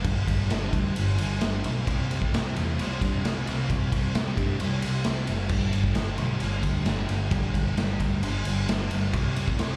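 Heard through a club PA with the room's ambience around it and little reverb, this short cut from a longer quiet-loud alternative rock piece sounds raw and immediate, as if caught live at a gig. At 132 BPM in a straight 4/4, the mood is cathartic and restless. A thick, double-tracked fuzz guitar plays a distorted, picked riff moving between G5 and C5 chords. Underneath, a growling picked electric bass, bright and overdriven, carries the low end. The garage drum kit sits up front with a punchy kick, a medium-tuned snare, and crash and ride cymbals; it sounds saturated and gritty, with a rolled-off top and a pumping stone room around it. All three parts play together from the start through to about 9.8 seconds.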